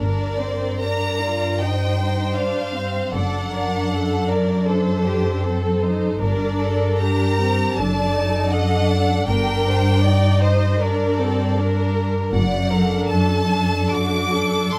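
Classical slow romantic movement for string orchestra in G minor at 78 BPM, solemn and elegiac with rubato phrasing, where a clear, vibrato-laden violin section carries the melody between C5 and D6 over a second violin line, a rich viola accompaniment and an up-front, lush cello bass joined by a bright, distant double bass that stops at 13.0 seconds, all bowed and closely captured in a detailed studio with light reverb as the harmony moves through Gm, Ebmaj13/G and D7/F# in this excerpt cut from a longer piece.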